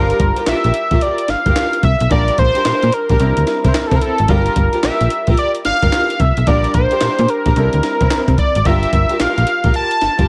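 A bold, bright octave-doubled lead sits up front with a retro, warbling sawtooth-and-triangle tone, its sustained notes carrying vibrato and chorus as it sings the melody from start to finish. This confident, bouncy new jack swing excerpt in 4/4 has a swung sixteenth-note feel and is cut from a longer piece. Beneath it, a snappy FM bass with a metallic, digital attack and decaying notes pushes the low end, while a sampler-style breakbeat kit enters at 0.1 s with a thumpy kick, a high-tuned snare, handclaps and hi-hat, all roughened by vintage 12-bit grit and gated reverb. A studio string section adds intimate, bowed stabs with a smooth top, and a clear concert grand piano with short sustain sits in the background as accompaniment. The harmony cycles through Gm7, Bb6 and C7, and the mix is wrapped in light digital ambience.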